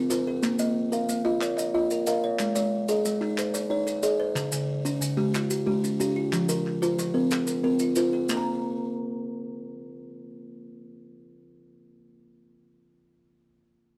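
A straight 12/8 pulse at 122 BPM drives this hypnotic southern African traditional piece, cut from a longer work, with an mbira-style interlocking cycle moving through Bbm, Ab, Db and Fm. Two up-front kalimbas carry the arpeggios for the full 12.7 seconds: one dark and buzzing, plucked with the fingertip, the other ringing, close-miked and dry, plucked with the thumb, both with a woody, hollow-box body. Crisp group handclaps and grainy maracas play from the start until 8.4 seconds, when the chords fall away and the kalimbas carry on alone, all set in the light reverb of a band playing live in one room.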